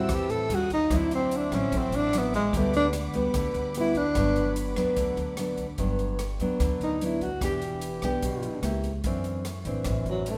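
A breathy tenor saxophone carries the melody up front in this romantic, sophisticated bossa nova excerpt at 147 BPM in G major, its dark, whispered subtone, soft attacks, scooped notes and vibrato giving a close-miked, intimate jazz solo feel throughout both passes of the tune. Beside it, a full-bodied nylon-string guitar plays thumb-plucked accompaniment with a classical touch, while a woody, dark pizzicato upright bass anchors the low end. A swinging big-band drum kit keeps time on hi-hat, rim click and a punchy kick, with an airy, polished hall sound. A lush, bowed studio string section holds smooth, even chords in the background until 5.8 seconds. The harmony moves through chords such as Am7, Eb9, D9, Gmaj7 and C#dim7, all set in a moderate recital hall reverb.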